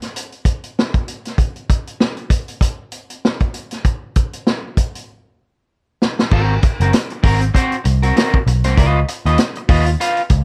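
A vintage drum kit opens this energetic, gritty funk excerpt alone at 97 BPM with a 16th-note swing, its punchy kick, medium-tuned snare, hi-hat and dark crash cymbals sitting up front in a studio room, and a drum fill runs from 5.1 to 6.3 seconds. At 6.3 seconds a round, foam-muted picked bass and a warm, slightly broken-up picked electric guitar enter together over Ab9 and then Db9 in Ab mixolydian, with studio reverb in the mix.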